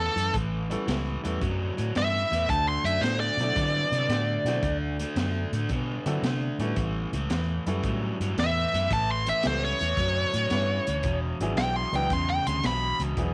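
Electric blues shuffle at 112 BPM in A mixolydian, with a swaggering, laid-back swing, cut from a longer piece and moving through A7, D7 and E7. A bright, biting lead guitar with overdrive sits up front with the melody, pausing from 4.8 to 8.4 seconds, while an overdriven semi-hollow guitar holds down the riff over a round, punchy, foam-muted electric bass. A gritty, saturated drum kit with a high-tuned snare and tight kick enters at 0.2 seconds, and a woody, slightly detuned upright piano with audible action noise joins at 0.7 seconds, all set in studio reverb.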